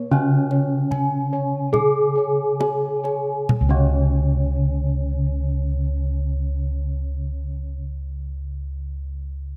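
Close, detailed microphones and light reverb frame this brief, ceremonial and serene excerpt of Javanese gamelan, which slows from the start to 3.5 seconds within a very slow 32 to 39 BPM in 4/4. Bronze metallophones ring out with the shimmering beats of paired tuning: one carries the melody, a lower one accompanies, and a higher one adds arpeggios touched with tape echo. Round, mellow bossed gongs supply both the bass and higher arpeggios, while a tight kendang played with soft hands drops out at 4.4 seconds.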